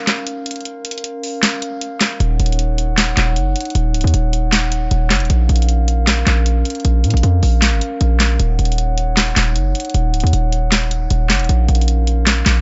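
A glassy, ethereal glass harmonica opens this menacing, eerie trap excerpt in Eb minor with slow-attack sustained chords, joined almost at once by an up-front electronic drum kit of sharp snare, bright hi-hats and handclaps carrying a small-room character. At 2.2 seconds a punchy, heavy 808-style bass drops in with a fast attack and a noise-layered sine tone that decays beneath the Bbm and Ebm7 changes. The half-time feel at 155 BPM and the dry mix keep the dark, smooth chords drifting behind the hard-hitting low end.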